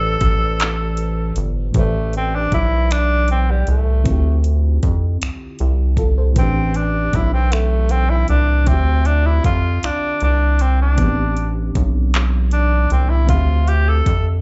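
This sounds like a live club set heard through the house PA, with the room's reverb around it and a muffled top end. It is a slow, yearning, late-night R&B groove in a straight six-eight feel, cut from a longer piece, with the chords moving between Am11 and Dm11. Up front, a breathy, whispered tenor saxophone carries the melody with light vibrato and a soft attack, its intimate, vintage pop tone touched by slapback echo, and from 1.8 seconds it takes a solo through to the end. Beneath it a rubbery square-wave bass bounces with a hollow, nasal filter pluck. A smooth, produced electronic drum kit enters at 0.2 seconds with a knocking kick, metallic hi-hats, finger snaps and handclaps. Further back, a mellow FM electric piano adds soft, round, dark chords coloured by chorus and slapback echo.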